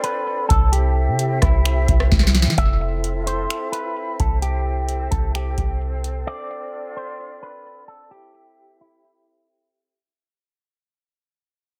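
A half-time 4/4 groove at 130 BPM comes from a booming analog drum machine: a deep kick, crisp snare, metallic hats, finger snaps and rim clicks sit up front with a small-room character, joined at 0.5 s by a soft, round 808-style sine bass, and the rhythm section drops out around 6.2 s. Over them, this dreamy, floating cloud-rap piece in C major carries its melody on a dark, clean, fingered electric guitar with an envelope filter, low-pass filtering and analog delay. A distant, airy flute group with vibrato holds sustained chords through a low-pass filter and sidechain pumping, and from 2.6 s a filter sweep and fade-out carry the echo-heavy mix through Fmaj7, C6 and Dm7 in this short cut from a longer piece.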